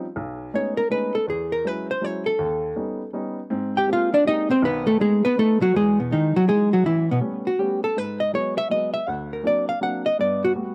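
A dark, clean, fingered hollow-body electric jazz guitar carries the melody up front from 0.6 s in this playful, swinging 3/4 jazz waltz at 162 BPM, with upright piano comping in a woody, polished tone touched by slapback echo beneath it and light reverb over an open-air recording, as the chords move through B13, E69 and Abmaj9 before settling into E major at 5.7 s on Emaj7, A9 and G#m7.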